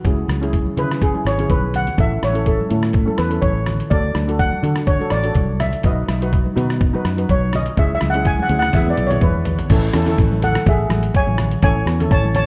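A shimmering lead steel pan carries the melody in this carefree, bouncy calypso clip, entering at 0.8 seconds with an airy tone played with medium rubber sticks and colored by tape echo. Underneath, a second steel pan, a dark, smooth double seconds struck with hard rubber sticks, supplies the accompaniment at a lower level. The groove moves at 124 BPM in 4/4 with a light swing on the sixteenths, in A major, anchored by a round, punchy fingered electric bass with a foam-muted tone and a muffled, pitched-down sampler-style drum kit whose thumpy kick and fat snare sit up front. Very quiet, thick-skinned congas add a live-room texture in the background, and the drums break into fills at 1.5 and 8.7 seconds. The harmony moves from C#m7 through A, D, B, C#m and E before settling on Amaj7 at 9.7 seconds, where a new section begins. The whole clip has a worn cassette character, with warbly pitch drift and light reverb, and it is cut from a longer piece.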